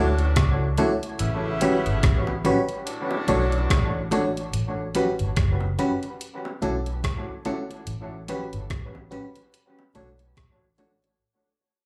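A 72 BPM groove in 4/4 with a swung sixteenth-note feel sets up this sweet, romantic lovers rock reggae fragment, heard as a live gig through a club's PA with light reverb. Up front, a gated 80s digital drum machine plays hi-hat, thumpy kick and rim click with an overdriven, sampler-style edge, while a vintage muted fingered electric bass sits beside it, dark, round and punchy, moving between F#1 and D2. A glassy FM electric piano with a bell-like attack carries the accompaniment through chorus, dub echo and plate reverb, and a mellow, compressed electric guitar adds dark, clean stabs with a warbly pitch drift. A distant, tight saxophone section with light vibrato plays a second line only until 4.1 seconds, and high-tuned bongos with soft hands sit in the background from 0.4 seconds. The chords cycle through Dmaj7, A13 and Bm9, and the whole passage fades out from 4.5 seconds to its end at 11.2 seconds.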